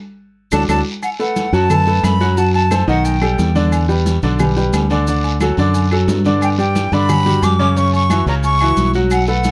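Salsa at a brisk 178 BPM, sunny and danceable, this cut from a longer piece opens on a band accent and drum fill before an airy silver concert flute carries the melody with vibrato and a crisp attack, playing from 0.5 to 3.6 seconds and returning at 6.4 seconds. A brilliant, polished baby grand piano with short sustain and a round, punchy fingered electric bass sit up front, a raspy guiro adds texture, and soft-handed congas, ringing timbales and agogo bells, woody claves and grainy maracas sit in the background. Light reverb and close, detailed microphones keep the sound clear.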